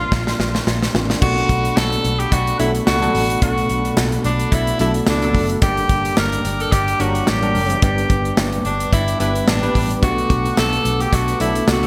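A bright, forceful tenor saxophone carries the melody up front with vibrato and a distant, roomy shimmer, leading this nostalgic, romantic excerpt of 1980s-style pop at 109 BPM with a light sixteenth-note swing, over a mellow tine electric piano, a glassy, ethereal glass harmonica holding chords in the background, and a dark, foam-muted fingered bass. A modern studio drum kit with bright cymbals, tight kick, gated reverb and tambourine opens with a fill alongside a very quiet, metallic cowbell, while a punchy, detuned sawtooth polysynth adds funky stabs with chorus and digital delay from 2.6 seconds. The bright digital production moves through chords such as Bm7, Gm and G under a moderate plate reverb.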